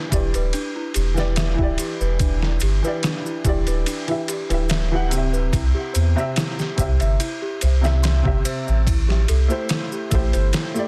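Dark and melancholic, this trip hop excerpt sets a delicate, bell-like celesta playing arpeggios against a worn, woody, slightly detuned upright piano with harmonic tremolo, both carried by tape echo over Em7, C and Am7 chords. Up front sit a deep, round dub sub bass and a gritty, pitched-down sampler-style drum kit with a thumpy kick, medium-tuned snare and ride cymbal, while compressed, saturated maracas stay in the background. Studio reverb and a dense, heavily limited modern master shape the overall sound.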